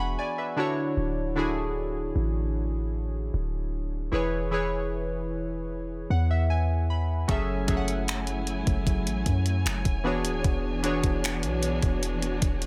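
Contemporary R&B with a moody, late-night feel, this cut from a longer piece opens on detuned, chorused analog keys and a deep, boomy 808-style bass, with the keys adding a fill at 5.7 seconds. At 7.3 seconds a dark, lush bowed string section enters with sidechain pumping, alongside a crisp, overdriven 8-bit drum machine of thumpy kick, hi-hat and finger snaps. The mix is dry, with the harmony moving from E13 through Dmaj7 and C#m7/E to F#m7.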